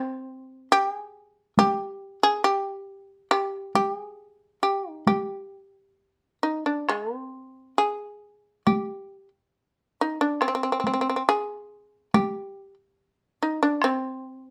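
A moderately reverberant studio sound frames this calm, austere passage of Japanese chamber music at 69 BPM in 4/4 with uneven, rubato beats, where an up-front, bright, buzzing plectrum-plucked shamisen carries the melody between C4 and Ab4 in G miyako bushi, joined at 1.6 seconds by solo taiko drums struck with heavy sticks in a small-room acoustic, all cut from a longer piece.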